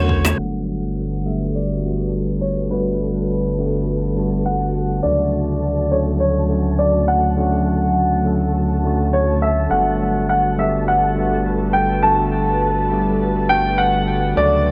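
A clear, slightly worn baby grand piano carries the melody up front from the start, over a gritty, overdriven tine electric piano, an airy chorused pad in the background and a round, deep analog bass, with both keyboards trailing digital delay. This is a relaxed, sunny chillout excerpt at 103 BPM in 4/4, moving from Gmaj9 to Dmaj7 and back. A faint, sparkling granular texture joins at 2.1 seconds, and the bright 1980s-style digital mix sits in a moderate plate reverb with a filter sweep running through it.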